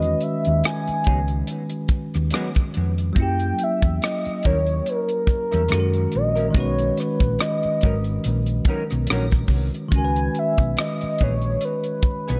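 Smooth and soulful, this neo-soul R&B excerpt sways at 71 BPM with a light 16th-note swing, moving from a rootless Emaj9 through F#7b9 and Bmaj9 to C#m9. A mellow, horn-like sawtooth synth lead with soft attack, vibrato, chorus and analog delay carries the melody up front, over a bell-like tine electric piano, a dark, round hollow-body bass and a dry, polished funk kit of hi-hat, tight kick and rim click. A clean, shadowy hollow-body jazz guitar with chorus and delay adds a quiet second line from 1.1 s, and a plate reverb leaves the whole mix dreamy.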